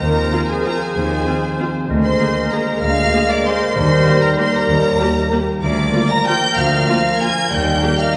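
Heard through the wet reverb of a concert hall, with a dulled top end, this brief cut from a longer orchestral ballroom waltz sounds sweeping and festive, its three-beat pulse pushed and pulled with rubato. A focused, close violin section carries the melody, while a distant oboe, a pure, hollow flute section and a lush second violin section with a gentle attack weave second lines beneath it. In the background, a vintage-sounding bassoon and a viola section that enters at 0.3 seconds supply accompaniment, a tight French horn section holds sustained chords, and a concert harp rings out fingerpicked arpeggios. A rich cello section and a double bass section anchor the bass, both stopping at 7.8 seconds. Around 3.8 seconds, a timpani struck with soft mallets adds a round, barely audible touch.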